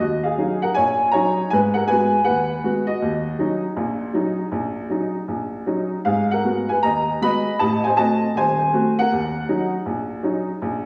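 Solo jazz with a cool, swinging mood, this brief excerpt of about 10.9 seconds features a woody, slightly detuned upright piano placed up front, playing alone with a loose rubato swing over minor-seventh chords and a diminished chord, its boxy tone ringing out in a wet recital-hall reverb.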